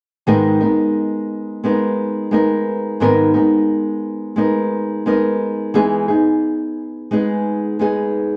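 A fingerpicked nylon-string guitar sits up front, its small, dark acoustic tone carrying this wistful, tender pop fragment, which is cut from a longer piece, from 0.3 to 8.4 seconds. It plays an accompaniment with a lightly swung sixteenth-note feel in 4/4, moving from G#madd9 to Emaj7 at 5.7 seconds. The sound is dry and close, in a 1970s studio style with a touch of small-room reverb.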